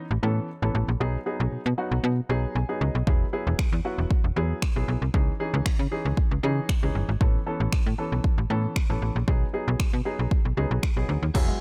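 Dance-pop at 116 BPM in a straight 4/4, this carefree, upbeat cut from a longer piece opens on a warm, worn baby grand piano whose intimate tone carries audible action noise and short sustain, pumping with sidechain compression. A snappy FM bass with a metallic, digital attack sits up front beneath it, also pumping, while the harmony moves through Aadd9, B6, Eadd9 and C#madd9. After a piano fill at 2.3 seconds, a deep house drum kit arrives at 3.1 seconds with an overdriven, deep kick, finger snaps and crash cymbal, layered and placed up front. At 11.3 seconds, a hollow, bouncy square-wave pluck with a warbling, vintage chorus and an electric guitar at the edge of break-up, picked and compressed under lush chorus, appear only briefly as the passage ends. The sound is dry, with little reverb.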